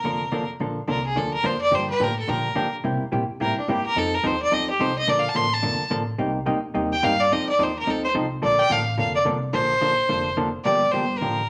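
A clear, biting fiddle with light vibrato sits up front, carrying a playful, intense solo from 0.6 to 9.5 seconds in this swinging western swing excerpt, taken at a brisk 215 BPM in Bb major. Beneath it, a clean, compressed hollow-body electric jazz guitar, also up front, supplies dark fingered accompaniment over jazzy seventh chords, while a woody, thumpy pizzicato upright bass on gut strings anchors the low end. A wet studio reverb gives the trio a lively sense of room, and a new section begins at 9.5 seconds.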